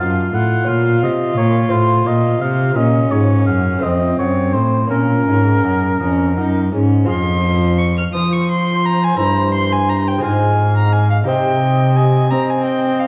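Solemn and introspective, this short excerpt from a baroque-style sonata movement in a straight compound metre sets an oboe melody over a continuo of lute and cello. The oboe sings with a warm vibrato, sounding distant and roomy, while a single bowed violin carries a second line up front with light vibrato. Violin and cello share a rich, reedy gut-string tone in period style, the cello anchoring the bass close to the listener. The lute sits in the background, its fingerpicked double strings bright and delicate, some doubled at the octave. All four parts play throughout, and at 7.1 s the phrase repeats as the harmony shifts to a new minor key centre. A wet recital hall reverb surrounds the ensemble, and the whole recording carries the worn, warbling pitch drift of old cassette tape.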